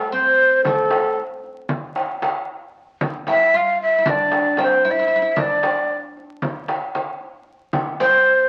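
Turkish makam ensemble music in a melancholic, longing 9/8 at 229 BPM in eighths, tuned to A4 = 438 Hz, where a breathy, end-blown reed-cane ney sings the tongued, straight-toned melody close and up front over a woody, deep, fretless oud plucked with a plectrum on double strings as a quieter second line, while a large clay-shell darbuka struck with hard hands sounds distant in a large room and a small, bright frame drum played with soft hands enters close and dry at 0.7 seconds, all captured in moderate studio reverb on a very old 78 rpm record carrying vinyl crackle in this brief fragment cut from a longer piece.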